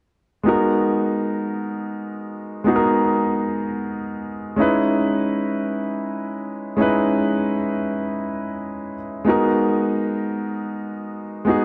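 Deep and soulful, this short amapiano fragment in free time and G# minor features a warm concert grand piano playing accompaniment from 0.4 to 11.6 seconds between G#3 and B4, with chords moving from G#m9 to C#m9 and back to G#m9 at 9.3 seconds. The piano sounds warm and natural, with deep bass, and sits up front. A moderate plate reverb adds space, while a worn, warbling cassette-tape character brings a warbly pitch drift.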